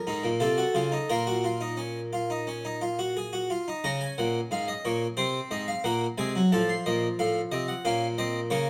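A brilliant, plucked French-style harpsichord sits up front in a moderately reverberant stone room, its octave strings giving the tone a bright doubling. This contemplative, serious fragment of a baroque-style three-part fugue in 4/4 unfolds on the solo instrument, ranging from Ab2 up to C6. The harmony moves through minor-key chords such as Cm7b5 at 5.2 seconds and F7/A before settling back on Bbm at 7.8 seconds, shortly before the excerpt breaks off from the longer piece.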